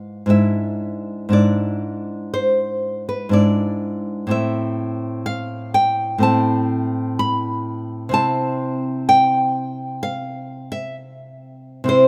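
Intimate and wistful, this short excerpt from a longer romantic piece for solo classical guitar in A minor drifts in rubato around 58-66 BPM in 4/4, its bright, fresh-stringed nylon guitar fingerpicked up front with audible finger squeak, moving from E7/G# through Am to Am/C in a small room with light reverb and the rough feel of a home demo.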